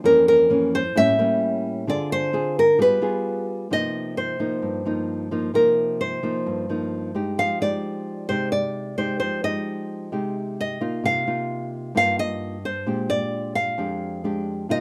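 Bossa nova excerpt at 131 BPM in a straight 4/4 with a melancholic, intimate mood: a full-bodied, classical-toned fingerpicked nylon-string guitar accompaniment with audible finger squeak moves through Bbmadd9/F, A7b9, Dm7b5 and G7b9 before settling into C minor at 3.7 s on Cm7 and Fm9, while a second, darker and smaller-sounding fingerpicked nylon-string guitar carries the melody up front in the upper register, all in a rough home demo mix with light reverb.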